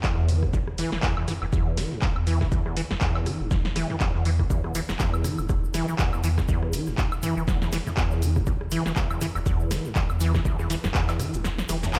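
Roomy and reverberant, as if played over a big sound system in a bare room, this trippy, gritty acid house excerpt in E minor moves at 121 BPM with a swung 16th feel, led by an up-front, squelchy, resonant sawtooth acid bass riff with tube saturation, chorus and delay, underpinned by a round sine sub bass with sidechain pumping, an analog electronic kick, a punchy analog drum machine of handclaps, hi-hat, rim click, snare, toms and woodblock, a very quiet dusty sampler-style kit of hi-hat, shaker and snare, and a grainy, bright egg shaker entering in the background at 4.5 seconds, before the kick drops out at 11.4 seconds.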